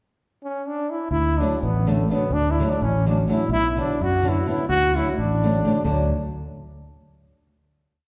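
Heard from further back in a reverberant recital hall, this short, complete Balkan wedding-band piece in 5/8 at 254 BPM (counted in eighths) has an exuberant, virtuosic mood in D major. A bright trombone in a classical style opens at 0.4 seconds, carrying up-front hook phrases with a light vibrato. The up-front fingered electric bass enters at 1.1 seconds, direct and amped, with root and fifth on the main beats, and a warm, fingerpicked flamenco guitar joins at 1.4 seconds with close-voiced off-beat chords as the harmony moves from D to B minor and back to D before the final chord.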